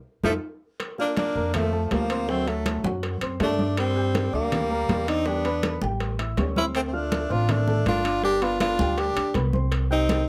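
A drum fill and a band accent open this driving, sophisticated Afro-Cuban jazz excerpt as a woody, growly upright bass and a dark, mellow upright piano with long sustain settle in under bright, damped congas, ringing metal-shell timbales and very quiet, tight, high-tuned bongos. Up front, a close-miked tenor saxophone carries the melody with a warm subtone, while a second, brighter tenor adds a vibrato-laden line with a soft attack. Light reverb gives the small-group sound a natural sense of space as the chords move through a jazz progression to about 10.3 seconds.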